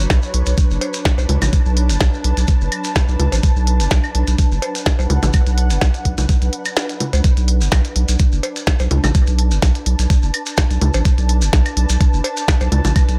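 Clinical and hypnotic, this minimal techno excerpt at 126 BPM in B minor sits on a Bm7 chord with a swung sixteenth feel, built on a knocking, up-front electronic kick and a deep, thick, saturated sine sub bass that pumps with sidechain, alongside clicky hats and a tiny snare from a minimal click kit, delayed claves, cowbell and bongos, grainy band-limited maracas, and an ethereal, airy, chorused pad that also pumps, while a very quiet swarming granular drone stops at 7.3 seconds, just after the kick drops out at 6.8 seconds ahead of the drop at 7.2 seconds, all set in a digital ambience.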